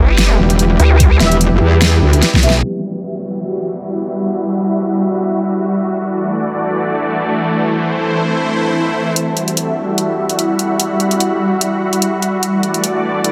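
Cut from a longer heavy wobble dubstep piece in E minor at 147 BPM with a swung, half-time feel, this aggressive passage opens on a lush, detuned supersaw pad pumping under sidechain and a nasal, formant-filtered vowel-sweep wobble bass, joined by an ethereal, airy pad and an overdriven dubstep drum kit with a huge snare, then a metallic, distorted FM wobble bass, a knocking electronic kick and very quiet classical-style brass stabs with light vibrato crowd the drop, which gives way at 2.6 s to a filter-swept stretch where a faint electronic downlifter and swell hangs in a dreamy, cathedral-sized reverb, until the drums return at 9.2 s for a build-up over Emadd9 and D/E chords.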